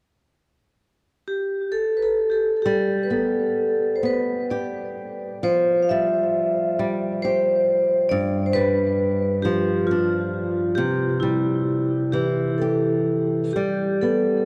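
Pastoral and wistful, this Celtic slow air in G mixolydian drifts at 44 BPM in a rubato 6/8, with a metallic, ringing vibraphone played with medium hard mallets carrying the airy, up-front melody through tape echo from 1.3 seconds, joined at 2.7 seconds by a boxy, fingerpicked flamenco guitar whose finger squeaks sit close as it moves through G, Fsus2, G7 and C, all bathed in a long cathedral reverb and a dark production in this short excerpt.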